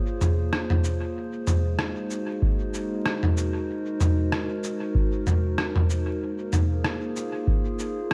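A lightly swung sixteenth-note groove in four drives this spacious, meditative ambient dub fragment, where a muffled, pitched-down, overdriven lo-fi sampler-style kit of cabasa, rim click and toms sits up front beside a deep, dry electronic kick that enters at 2.4 seconds, while a warbling, detuned, nostalgic tape-like pad with chorus sustains mellow chords moving from Bbm9 through Ab9 to Bb7sus2, all wrapped in vinyl crackle and a light digital ambience.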